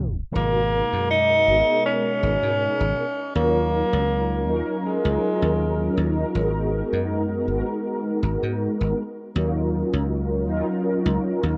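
Woozy and nostalgic, this vaporwave fragment at 80 BPM with a light swing on the 16ths opens on a tape stop under a dark, detuned synth brass with ensemble chorus and tape echo that moves between Abm9 and Ebm9, while a mellow subtone tenor saxophone with scooped notes plays a distant, roomy jazz solo until 5.9 s over a growly, foam-muted thumbed slap bass that stays dry and direct, the whole a rough home-demo mix in plate reverb, tuned to A4 = 445 Hz.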